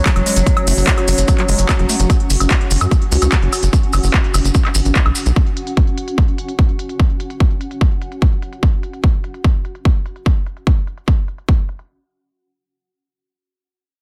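A heavy, layered electronic kick sits up front of this hypnotic, alien psychedelic trance excerpt at 147 BPM, partnered by a tight, punchy sequencer bass whose sawtooth-and-square pluck drives hard until 5.3 s, while a techno kit of handclaps, smooth filtered hi-hats and woodblock runs under a drum filter sweep throughout. In the opening 2.1 seconds a squelchy, distorted acid bass with delay and a filter sweep pulses in the background alongside an overtone-sweeping, ring-modulated drone with chorus, both pumping to the kick, and grainy vintage maracas shake until 5.3 s. A blurred, detuned granular cloud pad drifts over the top until 8.6 s on a dense, heavily limited master with light reverb.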